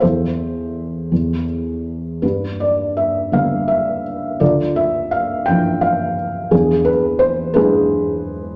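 A felt-muted upright piano plays alone and up front, its thick felt giving a dark, intimate tone with short sustain and audible action noise, in this wistful, melancholic fragment of a lyrical classical solo piano piece. The playing moves freely with rubato over 6/8 at about 55 BPM in dotted quarters, ranging from D2 to G5 as the harmony drifts from A minor over E through G and D minor add nine to an E7 chord at 6.5 seconds. A wet recital hall reverb of 1.4 seconds surrounds the close, hushed piano sound.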